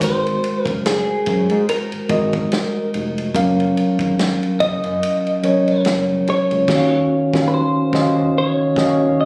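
Sultry and introspective, this short neo-soul R&B cut at 72 BPM in Eb dorian sets a fingered, compressed clean electric guitar melody over an up-front mellow tine electric piano, a saturated sawtooth-and-square synth bass with vibrato, and a dry soul drum kit with a tight kick and rolled-off top, moving through Ab9, Ebm9/Gb and Ebm9 chords with a band accent from 6.7 seconds, all heard as if recorded on a phone in the room.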